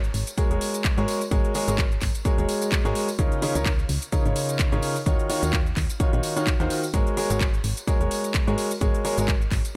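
Round, dark FM bass and a house drum kit of handclaps, metallic hi-hats and shaker open this feel-good piano house excerpt at 128 BPM, with a gently swung 16th-note feel and a tambourine tucked in the background. At 0.4 seconds the upright piano enters up front with a woody, long-sustaining riff, treated with analog delay and sidechain pumping that it shares with the bass. A punchy, tape-colored electronic kick arrives at the same moment and sits as the loudest element, its layered, produced character matching the drum kit's small-room re-recording. The uplifting harmony moves from Ab9sus4 to Db69 at 3.2 seconds, then Ebm9 and back to Ab9sus4. The whole excerpt carries a dry, gritty hardware sound with digital ambience.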